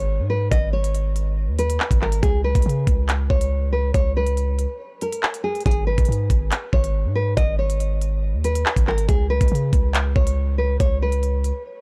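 A fingerpicked nylon-string guitar, full-bodied with audible finger squeak and softened by a low-pass filter and digital delay, carries the menacing, cold melody of this half-time drill excerpt over a deep, sine-toned 808-style bass with a fast attack and long, decaying notes, while an up-front electronic kit enters at 0.5 s with a knocking kick, crisp hi-hats and handclaps, all set in a dark, dry production with a brief break at 4.8 s.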